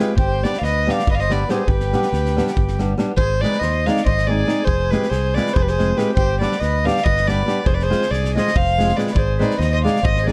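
A bowed fiddle leads this fiery, restless Balkan wedding-band piece in 7/8, its woody tone carrying a light vibrato and a plate-reverb sheen from up front. Beneath it, a reedy, full accordion plays a second line at a softer level, while a fingerpicked acoustic flamenco guitar supplies prominent accompaniment. At 0.2 s a fingered electric bass enters, direct and amped, along with a loose drum kit whose fat snare and punchy kick sit in a pumping studio room. The feel stays straight as one section plays and then repeats from 3.2 s, cycling through G, Ab and F minor chords. A moderate small room and a dark production frame the passage, which is cut from a longer piece.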